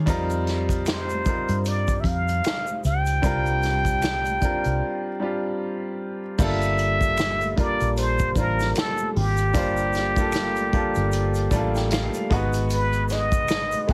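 A gently swung 16th-note groove at 76 BPM in 4/4 sets up this sultry, introspective R&B and neo-soul fragment, carried by a roomy, distant acoustic kit played with bundle sticks, a round, foam-muted vintage electric bass, and an egg shaker with finger snaps in the background. An intimate baby grand piano with audible action noise voices the sus and minor ninth chords and plays a fill at 11.1 seconds following a break at 4.8 seconds, while a breathy plunger-muted trumpet enters at 0.9 seconds with wah-wah colour, scooped notes and light vibrato. Light reverb and heavy compression give the mix a radio-like sound.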